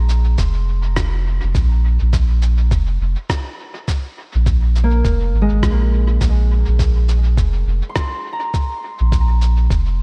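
A swung 103 BPM groove in 4/4 comes from a thumpy, pitched-down electronic kick and a muffled, dub-echoed cabasa and rim click, both sampler-style and tape-softened. Beneath them a deep, round sub bass sits up front throughout this spacious, hazy ambient dub fragment on Bbsus2. Above, a mellow, ringing fingerpicked concert harp plays tape-echoed arpeggios briefly at the start and returns from 4.8 seconds, all in a dry space.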